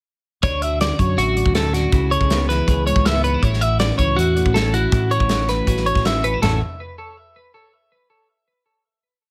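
A bright, twangy twelve-string electric guitar carries syncopated fingerstyle arpeggios through a digital delay, riding above a second clean twelve-string that picks a compressed, up-front ostinato in this short, intricate and wistful math rock and midwest emo piece. A round, punchy fingered bass sits locked to the tight kick drum, while a roomy, distant-sounding acoustic kit with a medium-tuned snare, hi-hat, toms and splash cymbal breaks the groove over chords moving from Dmaj7 through C#m7 to A6. Everything plays together from 0.4 seconds until the parts stop around 6.6 seconds, leaving a final A chord to ring in light reverb.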